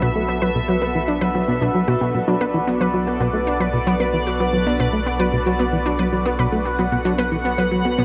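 Built on a bright, evolving resonant pad that holds a Bm7 chord up front with chorus, this hypnotic, mysterious stretch of sequencer-driven ambient space music at 113 BPM in B minor, cut from a longer piece, sets a punchy, funky analog bass riff with tape echo over a deep, round sine sub bass, while a lush, detuned unison pluck arpeggiates in the background through tape echo and a very quiet bubbling texture of random filter steps hovers on a single note, the mix sitting inside a huge, wet reverb space.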